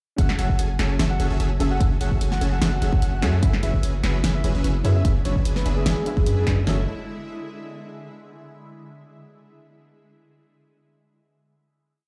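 A bittersweet, dreamy future bass drop in F# minor at 148 BPM in a half-time feel opens at 0.2 s with a punchy kick and fat snare, a second layer of warm closed hats with rolls, a deep sine 808-style bass that follows the chords, and a detuned, full-bodied supersaw stab pulsing in gated chords with cassette tape colour. Over these sit an octave-layered, mellow synth lead singing a repeating riff melody with chorus, vibrato and dub echo, and a dark, round pluck tucked into the background with held chords and syncopated pushes. A very quiet, ethereal pad with granular shimmer and phaser joins at 1.4 s, and sidechain pumping on the lead, pluck, stab and bass carries the piece through moving chords to a final F#m7 at 6.7 s, all set in a large, reverberant digital ambience.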